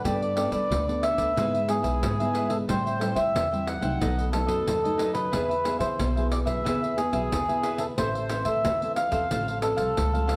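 A straight 4/4 pulse at 91 BPM drives this bittersweet, yearning excerpt of samba and choro in A minor, with a jingly pandeiro played with hard hands entering at 0.1 s over a woody, thumpy upright bass plucked pizzicato on gut strings. A mellow, reedy accordion carries the melody close and up front, its tone dry with a slow beating, while a crisp picked cavaquinho and a full-bodied, fingerpicked classical nylon-string guitar, complete with finger squeak, fill out the accompaniment. The recording sits in a wet studio reverb, heard from further back in the room, as the harmony moves from Gadd9 through E, Am7 and B7 toward Am and F/A.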